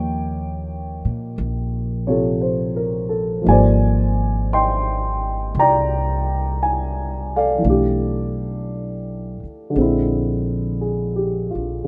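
A slow 57 BPM swing in 4/4 sets an intimate, tender mood for this short jazz ballad fragment, cut from a longer piece. A dark, mellow grand piano carries the accompaniment up front through rich harmonies from Eb13 to Abmaj9#11, Bm7b5 and Bb9. Alongside it, a woody pizzicato upright bass with steel strings sits close and present throughout, all in a light reverb.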